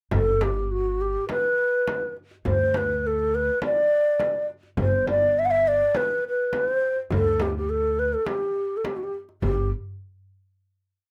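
A breathy, hollow low ney carries an ornamented modal melody up front in this short, warm and passionate Turkish makam piece in G makam rast at 103 BPM, over woody pizzicato upright bass, a crisp metal-shell darbuka and a deep, softly played frame drum, all heard in a moderate studio ambience with a rough home-demo mix before a final note at 9.4 seconds.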